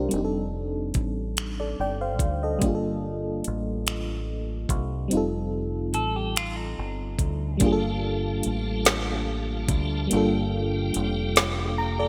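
Sultry and yearning, this slow six-eight R&B excerpt in G minor moves at 48 BPM, with a full-bodied FM electric piano pulsing with tremolo over a deep, round dub bass and an electronic drum kit of knocking kick, woody snare, metallic hats and finger snaps, the kit bathed in gated reverb. A twangy clean electric guitar adds a brief second line with lush chorus from 5.9 to 7.6 seconds, and at 7.6 seconds a piping tonewheel organ enters with lightly overdriven sustained chords, key click and slow rotary speaker, as the chords turn from F13 through Gm9 and F9 back to Gm9. The electric piano closes with a short fill, all framed in a bright 1980s-style digital production with light reverb.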